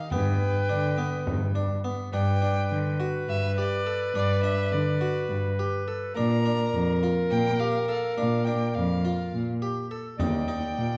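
Set in a straight 7/8 at 208 eighth-note beats per minute, this restless, shimmering excerpt of contemporary chamber music unfolds in an uneven meter that keeps the phrases off balance. A close, focused violin carries the melody high in its range with vibrato, while a classical-style solo clarinet sings a clear second line just beneath it. A Flemish-style harpsichord, close-miked and dry, spins bright plucked arpeggios throughout. A muted cello, played con sordino, sits up front in the mix with a veiled tone, soft attacks, vibrato and portamento as it anchors the bass. A deep frame drum sounds from a distance in the first 2.0 seconds and returns briefly at 10.2 seconds, as the harmony moves from G to Bb at 6.2 seconds and on to Eb. The ensemble rings in a moderate recital hall with a dark production.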